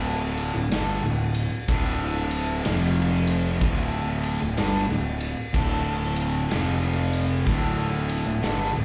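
A distorted, double-tracked fuzz guitar leads this brooding stoner and doom metal excerpt, picking a low riff in D minor at a slow 62 BPM in 4/4 with a swung eighth-note feel. The riff moves between D5 and F5 power chords, shifting to F5 at 2.7 seconds and back to D5 at 3.6 seconds, then repeating that move before settling on D5 again. Beneath it, a growly, overdriven fuzz bass, picked and heard direct and amped, sits deep in its low register and stays up front alongside the guitar. A big acoustic rock kit enters at 0.4 seconds, with a punchy kick, medium-tuned snare, crash and ride heard in a bright stone room. The whole performance comes across as a live club gig through the venue's PA, carrying an ominous, heavy weight across its 8.8 seconds.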